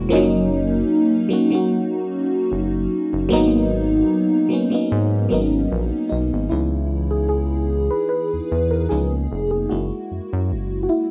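A chorused, phased FM electric piano with a soft pad layer opens this short contemporary R&B excerpt at 75 BPM, its lush, dreamy tone softened further by a cassette tape haze, while a rubbery, hollow square bass sits up front beneath it. The mood is longing and sensual, with a light swing on the sixteenths and chords moving from D#m7/F# to G#m7 in C# dorian. At 6.5 seconds the electric piano takes a solo over C#m7, C#13 and F#7, all captured with light reverb in a home cassette recording.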